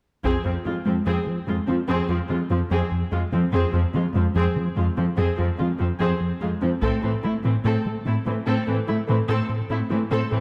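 Vast and brooding, this excerpt of a hybrid orchestral and electronic film score builds at 73 BPM over Fm shifting to Am, as a rich, up-front viola section sings with vibrato and portamento above a smooth, gliding sawtooth synth bass riff, a soft, ringing harp-like synth pluck arpeggiates with chorus and digital delay behind them, a lush cello section holds the low end in the background, and heavy-sticked taiko drums strike at 0.2 and again at 6.8 seconds, all within a moderate concert hall reverb.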